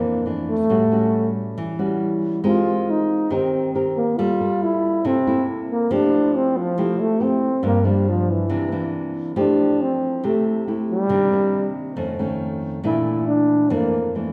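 Bossa nova with a sunny, breezy mood, where a mellow trombone sings a jazz-style solo melody with light vibrato, scooped notes and a smooth top over thumb-plucked classical nylon-string guitar with audible finger squeak, both up front through a lush recital-hall reverb that lends this short cut from a longer piece a churchlike glow as rich extended chords drift from Bbmaj7#11 back to Bbmaj7#11 at 12.8 seconds.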